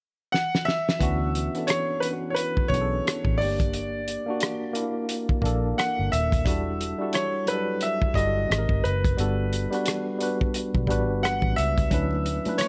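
Smooth and soulful, this short neo-soul R&B excerpt in a lazy swung 4/4 opens with a drum fill on a dry, muffled soul kit with a fat snare and tight kick, joined at 1.0 seconds by a round, foam-muted electric bass and a worn, slightly out-of-tune tine electric piano with light overdrive comping lush chords like Dmaj13 and Em11, while an intimate baby grand carries the melody with audible action noise, and distant, high-tuned congas with a large-room sound appear only at 11.9 seconds, all set within a small, rolled-off room ambience.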